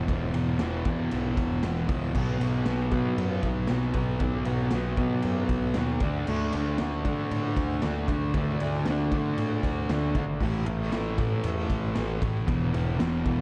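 Raw and swaggering, this garage rock excerpt at 116 BPM in straight 4/4 rides on a dark, double-tracked fuzz guitar riff sitting up front and moving through E5, B5, D5 and A5, over a direct, bright picked electric bass and a gritty, saturated acoustic drum kit whose punchy kick, medium-tuned snare, crash and ride ring out in a pumping stone room, with the whole take lightly reverberant and captured on cassette tape.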